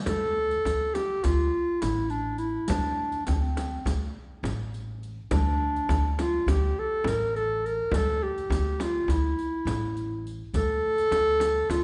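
The recording has the moderate reverb of a recital hall in a church or concert hall, with a 1.6-second decay and a soft top end that rolls off above 10.4 kHz. This short passage, cut from a longer piece, is a Turkish makam ensemble in D makam nihavent, tuned to A4 = 438 Hz. It moves at 206 eighth-note beats per minute in a straight 9/8 with a longing, soulful mood. A mellow clarinet carries the melody up front in a classical solo style, singing between C4 and Bb4. Beneath it, a woody upright bass with gut strings plays pizzicato, dark and thumpy, between A1 and D2, while a large, deep frame drum sits close and dry and a riq adds bright jingles struck with hard hands. The four parts play together from 0.1 to 11.8 s.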